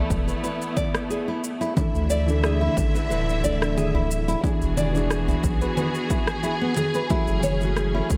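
Organic downtempo at 90 BPM in E mixolydian, peaceful and warm, where lush bowed strings sustain chords and a felt-muted upright piano with tape echo accompanies fingerpicked nylon-string guitar arpeggios, with a round, dark analog bass pumping under the sidechain, a punchy overdriven electronic kick with layered shaker, congas and rim click, and a deep, dry udu that drops out at 5.6 seconds, all moving through Asus2, Dsus2, E7 and F#m7 in a small, lightly reverberant room.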